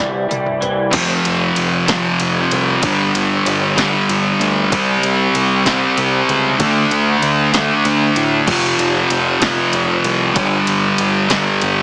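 Cathartic and anthemic, this short excerpt from a longer quiet-loud alternative rock piece moves at a slow 64 BPM in a straight 6/8. It opens with a drum fill from a punchy analog drum machine, its tape-warm kick and snare joined by crash, ride, hi-hat and toms, while a bright, twangy electric guitar through a small old amp picks lo-fi, slightly broken-up arpeggios on a C chord with analog chorus. At 0.9 seconds that guitar stops and a thick, dark fuzz guitar takes over up front, double-tracked and picked, driving a distorted riff through power chords on F, G, C and D. From the very start, a growling fingered electric bass, direct and amped with overdrive, holds the low end alongside the drums to the end at 11.8 seconds. The whole sound is heavily compressed and squeezed into a small-speaker, radio-like band with light reverb.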